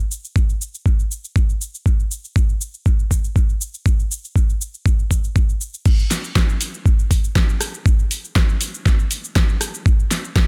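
Groovy and feel-good, this dry nu-disco drum passage, cut from a longer piece, opens on a layered, electronic pop kit of crash cymbal, hi-hat, rim click, shaker and a fat snare, joined at 0.4 seconds by a gritty, thumpy, overdriven electronic kick placed up front, with a drop arriving at 5.9 seconds.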